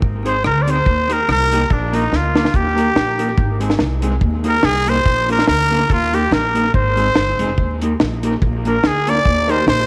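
Ska at 143 BPM in Eb major, with a lightly swung 4/4 feel and a joyful, cheerful mood, this excerpt from a longer piece sits on a tuning slightly below standard pitch. A raspy, growling trumpet carries the melody as an up-front pop-style solo with light vibrato, its gritty edge riding over a repeating Ab, Eb, Bb, Eb progression. Underneath, a woody, thumpy upright bass with gut strings plays pizzicato, while a dark, clean electric guitar, played with the fingers, fills in the accompaniment through tape echo. The deep reggae drum kit is dry and smooth, with a high-tuned snare, tight kick, hi-hat and rim click, a rolled-off top, and a short fill at 2.1 seconds. A warm upright piano with short sustain adds a single stab in the background at 9.5 seconds. A moderate echo-chamber reverb and vinyl crackle give the recording a vintage character.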